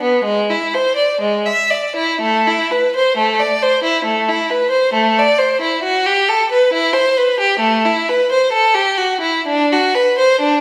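A single bowed violin, rich and focused with vibrato and placed up front, plays alone for the full 10.6 seconds of this brief fragment of a serene, dance-like baroque-style suite movement in 4/4, moving freely around 58-68 BPM between G#3 and E5 and ringing in a reverberant stone room.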